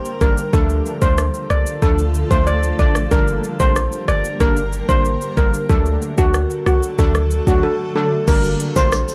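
Dancehall with a sultry, tough mood, cut from a longer piece, built on an up-front electronic afro-pop kit with a deep kick, metallic hats, rim clicks, shaker and crash, under a boomy, sine-toned 808-style bass and punchy, detuned sawtooth brass stabs thickened with chorus. A shimmering steel pan carries the melody up front, struck with hard rubber sticks and trailed by analog delay, while a cloudy, evolving granular pad sustains blurred chords in its own reverb. The dry, gritty cassette sound frames a short break from 7.6 to 8.3 seconds, after which a vintage, band-limited tube shaker slips in quietly in the background at 8.3 seconds.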